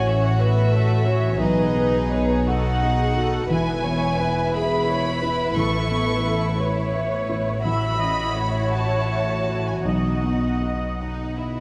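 From the first moment, a hopeful, moving cinematic film score unfolds in a rubato 6/8 at around 51-61 BPM, with an intimate chamber violin section carrying the melody sul tasto with light vibrato over a floating symphonic violin second line, woody, lush violas and a dark, vintage-toned baby grand piano in accompaniment, ringing fingerpicked concert harp arpeggios in the background, and pure cellos and rich double basses holding the bass, set in a wet scoring-stage reverb as the harmony moves from F#m7/A through B, E and Aadd9 in this passage cut from a longer piece.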